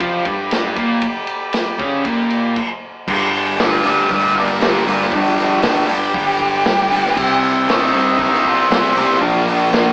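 Garage rock with a rowdy, swaggering feel, built on a double-tracked fuzz guitar riff up front, a buzzy overdriven combo organ holding sustained chords with light vibrato in the background, and a vintage acoustic drum kit with a punchy kick and a rolled-off top. After a brief stop at 2.6 s, an octave-fuzz lead guitar enters at 3.6 s with a dark, distorted solo as the chords move from G to C and then Bb. The band sounds live in one room, bathed in wet studio reverb with an AM radio tone, in a clip cut from a longer piece.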